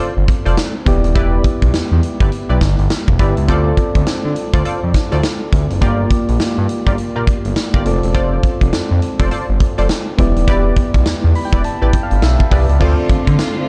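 Swung sixteenths in 4/4 drive this punchy, bouncy R&B new jack swing cut, built on a big rock drum kit with bright cymbals, a tight kick and a medium-tuned snare roughened by 12-bit sampler grit, with the drums and a smooth sawtooth-and-square synth bass with a moving notch both sitting up front. Round electric-piano-like synth keys with chorus play mellow, decaying chords over an F6, Em7, Dm7, Gm7 progression and take a fill from 11.1 to 12.8 seconds, while a funky, detuned polysynth comp adds filter-swept stabs through chorus and digital delay. A lush bowed string section with vibrato enters at 12.8 seconds just as the excerpt breaks off, and the whole piece carries a dark, small-room production.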